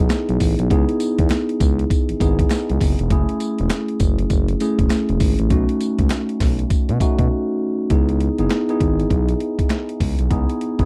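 A dry, close 1970s-style studio sound frames this punchy, slick new jack swing R&B excerpt with a swung 16th-note feel, where a gritty, pitched-down, sampler-style boom bap kit with a thumpy kick, high-tuned snare, hi-hat and tambourine sits up front beside a smooth, wave-folded sawtooth synth bass with vibrato and portamento and a mellow tine electric piano through a phaser moving from C#m9 through F#m7 and B7, while a hollow, very quiet group handclap adds a human touch and a brief break at 7.3 seconds leads into a new section at 7.9 seconds.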